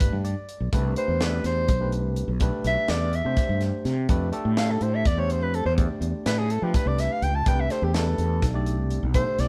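Electric jazz fusion in a straight 7/8 at 249 BPM, counted in eighths, this bright, funky passage in C major is cut from a longer piece. An overdriven tine electric piano opens with a short fill, barky and gritty through a combo amp, before a breathy soprano saxophone takes a solo from 0.7 seconds to the end. The saxophone sits up front with a mellow, whispered subtone and soft attack, giving its jazz-style lines an intimate feel in the range from G4 to A5. Beneath it, a fretless electric bass sounds growly and direct, while a tight funk drum kit with a high-tuned snare, tight kick and hi-hat stays mid-forward in a small room. The harmony moves from Gadd9 to Cmaj9, then to Fmaj9 at 4.1 seconds and back to Cmaj9, all captured as a band playing live together in one room with light reverb.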